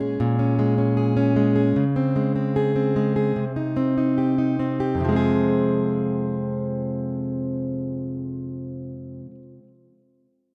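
A plugged-in steel-string acoustic guitar opens alone, fingerpicked, with the full-bodied sound of a jumbo body and fresh strings, placed up front and touched by a digital delay. It is a short, longing pop fragment cut from a longer piece, built on a Bbm7, Db5 and Cm progression. The playing slows down through the opening passage, and a new passage begins at 5.0 seconds. The guitar carries the whole piece as a solo part until it stops at 9.4 seconds. A small room ambience surrounds it, giving the emotional performance the feel of a rough home demo.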